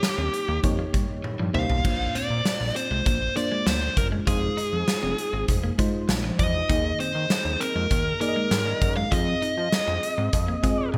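A straight 4/4 pulse at 99 BPM drives this uplifting, nostalgic 1980s-style pop excerpt, with a huge arena drum kit up front, its punchy kick, medium-tuned snare, hi-hat, crash and toms bathed in gated reverb and a drum fill at 1.2 to 1.8 seconds leading into the main section over chords moving from Eb7 to Bbadd9, Fm7 and Ebsus4. A fat, detuned sawtooth analog bass with a filter sweep and a slightly broken-up electric guitar riff sitting in the background through analog chorus enter at 0.2 seconds, while a round, warbling FM electric piano with chorus fills out the accompaniment. Over it all, a dark, smooth overdriven lead guitar carries the melody up front, the whole mix polished with bright digital production and a moderate plate reverb.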